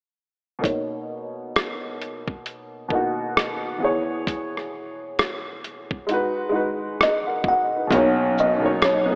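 Nostalgic and cosy, this slow lo-fi hip hop passage at 66 BPM in B major, cut from a longer piece, opens at 0.6 seconds with a worn, woody upright piano carrying cassette-tape colour and a filter sweep over Bmaj9, E6 and G#m7 chords, while a gritty, pitched-down boom bap sampler kit with a thumpy kick, hi-hat, rim click and shaker sits up front with a lazy swing. At 7.0 seconds a hollow, ringing kalimba melody with analog delay appears, and at 7.9 seconds a dark, boxy baby grand piano takes the bass as a swirling, phased string machine adds sustained chords in the background. A lush hall reverb and a rough home-demo mix with an AM-radio tone give the recording its homespun character.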